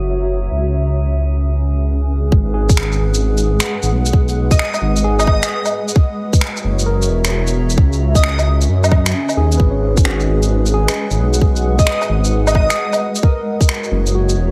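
Future garage at 132 BPM in G# minor with a swung 16th feel, melancholic and rainy, opening on a drifting glassy harmonics texture and a filter sweep over a blurred granular cloud pad and a deep, rumbling detuned saw bass, both pumping to the sidechain. At 2.3 seconds a tight, tape-warm kick arrives up front, joined by a layered shaker, finger snaps and woodblock re-recorded in a large room, and a barky, lightly overdriven tine electric piano with dub echo sitting in the background. An airy, dreamy lead with chorus, cassette tape colour and dub echo floats in at 4.5 seconds and returns briefly near the end of this excerpt, all over a low-pass filtered mix with light reverb and a cycling F#7, C#m7 and G#m7 progression.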